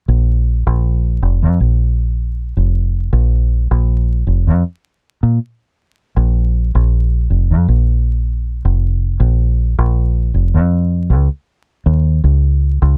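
Brooding and hypnotic, this short trip hop fragment, cut from a longer piece, rests entirely on a deep dub electric bass played with the fingers. The bass sits up front and runs throughout, from 0.1 to 13.0 seconds, its foam-muted tone dark, round and punchy. A slight swing on the sixteenths gives the four-beat groove a loose, lazy pull. The sound is dry and direct, with little reverb, so the amped bass feels close at hand. A layer of vinyl crackle wraps the recording in a dusty, worn surface.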